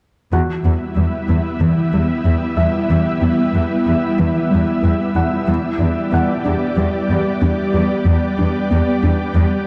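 A dark, warm mix set in a wet recital hall gives this tense, futuristic cinematic excerpt a spacious glow. An ethereal, warbling pad with ensemble chorus holds sustained chords up front beside a lush, bowed cello section carrying the bass with smooth vibrato, while a soft, round pluck with chorus and delay plays arpeggios in the background. A clear, polished baby grand piano adds delayed texture behind them, and the harmony moves from Em to G/E at 5.5 seconds.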